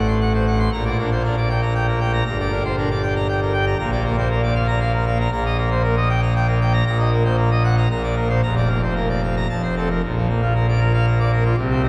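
A full pipe organ plays alone throughout, its mixtures ringing out in a brilliant, romantic voicing that spans from deep pedal tones to high treble. This majestic, jubilant classical toccata moves in a stately triple metre with a straight feel, tuned slightly low at A4 = 437 Hz. The harmony begins in a darker minor colour, then turns to a bright major from 3.8 s, passing through a shadowed minor chord before it settles onto a cadence that arrives at 10.0 s. The organ sits up front, yet the cathedral acoustic places the listener further back, with a long, wet reverb tail of 5.8 seconds. The passage is cut from a longer piece and ends at 11.9 s.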